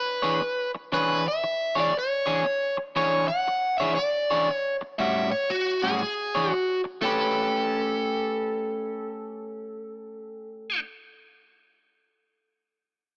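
A laid-back swung blues at 118 BPM in 4/4, this gritty excerpt in A mixolydian sets a biting overdriven guitar melody, running from 0.0 to 10.8 seconds in a range of F#4 to F#5, over an up-front picked riff on an electric guitar at the edge of break-up with subtle chorus, its harmony moving through E13, A6 and E6 before settling on A9 at 7.0 seconds, all heard with light reverb and a small-speaker sound.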